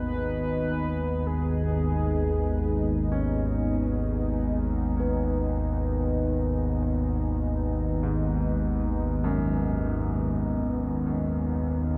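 This dark, unsettling ambient drone in G# minor opens with an up-front analog drone, evolving and sawtooth-edged, beneath a deep, moody pad with a detuned unison and sub octave, while a bronze singing bowl rings with slow beating in the background. A round, warbling horn-like synth lead with vibrato, subtle chorus and delay sounds a brief melody until 3.7 s, and from 3.1 s a clear concert grand piano with deep bass plays arpeggios with delay. At 49 BPM over a single G#m chord, the excerpt sits in a vast, echoing cathedral reverb that keeps the top end dim.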